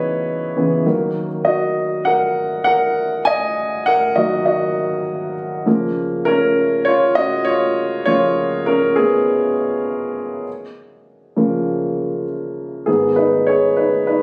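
A woody, up-front upright piano plays alone through this brief pop fragment at 100 BPM in straight 4/4, its driving, bittersweet harmony moving from C#m7 through D#m and C#6 before landing on G#m at 12.9 seconds, all captured on a phone in the room with light studio reverb and a muffled top end.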